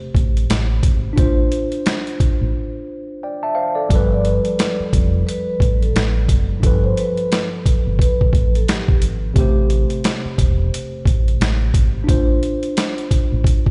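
Boom-bap hip-hop at 88 BPM with a swung 16th-note feel and a reflective, gritty mood, this short cut from a longer piece rides on an up-front, compressed, pitched-down sampler drum kit with a thumpy kick and high-tuned snare, a dark, round, punchy fingered electric bass, and a worn, slightly out-of-tune tine electric piano with a cassette-tape color moving through Am7, Dm7/A and G9. After a break from 2.5 to 3.9 seconds, a soft-mallet vibraphone with slow motor vibrato and tape echo carries a ringing, metallic melody from 4.1 to 9.0 seconds. The mix sits in a large, reverberant bare room, with the top end rolled off above 10.9 kHz.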